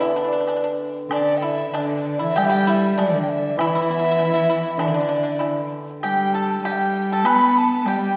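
Bathed in a reverberant concert-hall acoustic, this festive, graceful excerpt of Chinese traditional chamber music moves at 98 BPM in a rubato 2/4 in D zhi mode, with a mellow, hollow large dizi carrying the melody over a breathy, unsteady xiao in the background, a dry, percussive fingerpicked pipa, a shimmering, bright hammered dulcimer that stops at 6.6 s, a very quiet woodblock, and a rich, smooth bowed cello that enters up front at 1.1 s.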